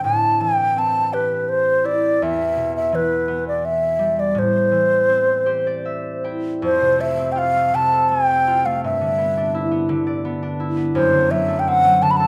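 A moderate recital-hall reverb surrounds this short cut from a longer Celtic slow air, with an airy, wooden baroque flute sitting up front, close-miked, its crisp attack and expressive vibrato carrying the haunting melody. Beneath it, a bright, ringing concert harp, fingerpicked and also up front, plays the accompaniment through a mournful A minor progression from Am7 and Em toward F, G6 and D7/F#, adding a fill from 5.1 s just before the second section begins at 6.6 s. The pace drifts in a rubato 3/4 at roughly 77-86 BPM, tuned to A4 = 439 Hz.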